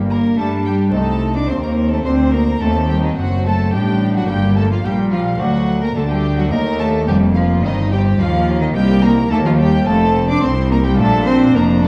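Classical baroque-style concerto movement in G minor at 107 BPM, dramatic and driving, cut from a longer piece, where a dark, reedy solo cello carries the melody over a gut-strung period-style ensemble of a shadowy violin section on the high line, a rich violin section on a second line, a nasal viola section in the background, a rich cello section and double bass section on the bass, and a delicate, very quiet fingerpicked lute, all set in a wet recital hall with vinyl crackle.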